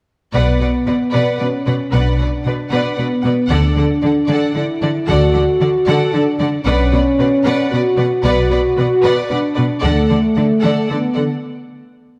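In a steady 3/4 at 114 BPM with a straight feel, this cinematic fragment in B minor carries a heroic, dramatic mood, moving between Bmadd9 and D. Bowed violins hold the melody around F#5 with light vibrato and a smooth, even tone, while a second violin line near D5 adds a lush layer beneath. Violas fill in the accompaniment between A4 and B4, their expressive portamento giving the middle of the texture a singing quality. Cellos and double basses anchor the low end with a rich, lush bowed sound, the basses dropping out at 10.1 seconds while the cellos carry on to 11.2. A dark French horn section sustains chords from 0.4 to 11.4 seconds with soft attacks, and the whole ensemble sits in a reverberant scoring-stage space before a brief break closes the passage at 12.2 seconds.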